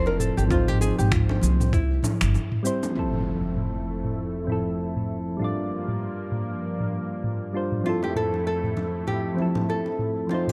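Sunset chillout in F major at 98 BPM, with a lightly swung 4/4 feel and a blissful mood, cut from a longer piece. Soft, round electric-piano-like synth keys sit up front throughout, mellow and gently decaying, with chorus, a low-pass filter and tape echo. A small, fingerpicked nylon-string guitar carries the melody with audible finger squeak and a touch of digital delay, while a woody, pizzicato upright bass and a gritty, thumpy electronic kick anchor the opening before a short break at 2.3 seconds. An electronic smooth R&B kit of snaps, shaker and low-pass-filtered toms runs through the track, and bright bongos and congas sit distant in the background. At 3.0 seconds a lush, thick unison pad of detuned sawtooth and square waves swells in with slow attack and long release as an electronic impact sounds, and the guitar returns at 7.9 seconds over chords moving from Fmaj7 to Gm7 and back. 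Plate reverb and a dark, warm production wrap the whole piece in a hazy glow.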